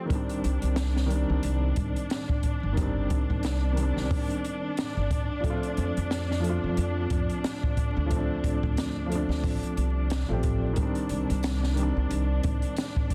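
Vinyl crackle sits over a dense, heavily limited master with little reverb in this melancholic, dark trip hop excerpt in swung 4/4, where a mellow upright piano with audible action noise, tremolo, vintage 12-bit sampler grit and tape echo plays over lush bowed strings, a growly pizzicato upright bass and an up-front open jazz kit with a boomy kick and high-tuned snare, joined by a very quiet tambourine at 11.4 s.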